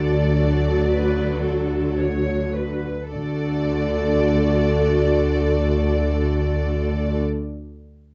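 Warm and lyrical, this slow romantic movement for string orchestra moves in a rubato three-beat lilt, easing back over its first 3.1 seconds in a short passage cut from a longer piece. A violin section carries the melody with a dark, woody tone and soft attack, while a second violin line sounds rich and smooth. Beneath them a lush, focused viola section accompanies, an even-toned cello section and a vibrato-laden double bass section anchor the bass together, and light reverb frames the mellow production.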